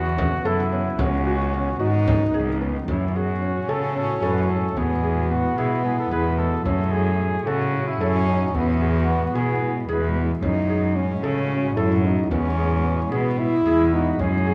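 Set in a restless 7/8 with a straight feel, this urgent slice of contemporary chamber music is cut from a longer piece. A deep, very quiet frame drum enters at 0.2 seconds beneath a bowed cello bass that sits up front, rich and floating with a soft attack and a pure sul tasto tone. Over it a flugelhorn carries the melody with vibrato and a punchy, vintage pop-style voice, pausing at 10.3 seconds and returning near the end, while a clear French horn with light vibrato plays a classical-style second line throughout. In the background, a felt-muted upright piano spins mellow, intimate arpeggios with audible action noise, and a cloudy, evolving granular pad holds blurred, detuned sustained chords with its own built-in reverb. The harmony opens on A69 and C#9sus4 before settling into an alternation of F#madd9 and E, and the whole ensemble sits in a wet recital hall.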